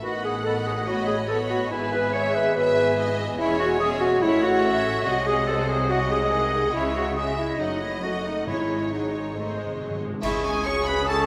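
Soaked in a wet scoring-stage reverb with a faint mains hum beneath it, this stormy, dramatic fast romantic orchestral excerpt drives along at 142 BPM in 4/4, moving from E major into C# minor. Distant, intense bowed violins carry the lush melody over a clear vintage clarinet, a pure, mellow flute section and a second, smooth violin line. Beneath them sit a dark bassoon, focused violas, a prominent warm French horn section holding sustained chords, very quiet ringing harp arpeggios, and rich cellos with even double basses on the bass. Hard-mallet timpani enter at 8.5 s and play a fill from 9.4 s toward 10.2 s, where a soft-attack trumpet stab, bright clash cymbals and concert bass drum mark an accent.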